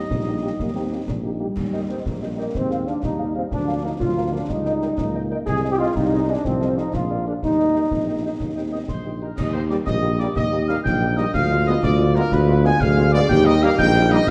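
A dark production sits in the wet reverb of a scoring stage, giving this short cut from a longer military-style march for wind band a proud, rousing character. Set in Eb major at 123 BPM in a straight 6/8, it opens with a distant, roomy trumpet section carrying the melody while a trombone section holds sustained chords with light vibrato beneath it. A mellow tuba sits up front on the bass line with a soft attack and smooth top, while a euphonium and a French horn section add a second line and accompaniment further back in classical style. Concert snare drum, concert bass drum and clash cymbals with dark cymbal tone keep the march pulse close at hand. At 8.7 seconds a pure, wooden piccolo with straight tone joins in the background, and the harmony passes through a Ddim7 at 11.3 seconds before settling back on Eb.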